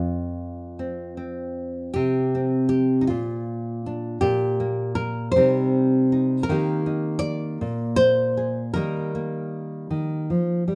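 In a rubato 6/8 lilt, this melancholic, wistful folk excerpt features a solo fingerpicked nylon-string guitar, warm and deep with a classical tone, sitting up front in light reverb as it ranges from F2 to D5 and moves from an opening F5 through open unaccompanied moments toward Bb, Cm, Eb and a Bb9 over its 10.8 seconds.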